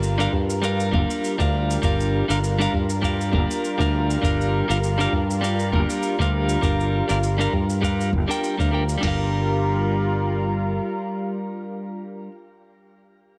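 Heard through worn, warbling cassette tape with a lush hall reverb, this smooth, relaxed sunset chillout excerpt swings gently on a Gm7 chord, with a thick, detuned sawtooth-and-square unison pad carrying chorus, 12-bit sampler grit and shimmer reverb, a growly, punchy fingered electric bass up front, and a clean, compressed picked electric guitar with digital delay and shimmer. An overdriven analog rhythm box with deep kick, crisp snare and crash, an airy brushed shaker and hard-handed congas in the background drop away by 9.2 s. The bass stops at 10.8 s and the pad at 12.2 s, while the guitar rings on until 12.4 s.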